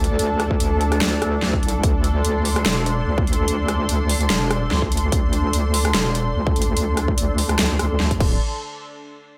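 A half-time groove at 146 BPM in 4/4, with a light 54% swing on the sixteenths, drives this heavy, menacing wobble dubstep cut, tuned to A4 = 436 Hz. The big-room dance drum kit sits up front with a huge snare, metallic hats, rim clicks and crashes, and an electronic kick drum joins at 0.5 s with a punchy, layered thump; both kits were re-recorded in a small room. Underneath, a compressed wobble bass built from square and sine waves wobbles heavy and mellow up front between D1 and D2, its overdrive and chorus shaded by a filter sweep that runs through the whole passage. Above it, a lush unison pad of detuned sawtooth and square voices with a sub octave holds a sustained D5 chord, its slow attack and long release colored by chorus, phaser and sidechain pumping. A light reverb places the parts in a modest space, and the passage stops at 8.4 s as a fragment of a longer piece.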